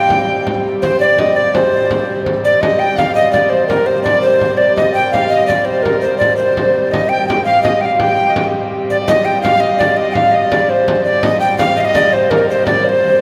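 A straight 6/8 at 112 BPM in dotted quarters steadies this mysterious, ancient medieval dance in C minor, with a small, bright frame drum struck with hard hands beneath a breathy, chiffy alto recorder that carries the melody up front with vibrato and tongued notes. A single dark, woody fiddle and a mellow, thumb-plucked concert harp, very quiet and ringing, shadow the tune in the same register, while a distant hurdy-gurdy holds a low wheel-bowed drone. The whole ensemble sits in a church or concert hall with a cathedral reverb of 6.1 seconds, and the clip is cut from a longer piece, the harp falling away at 12.7 seconds.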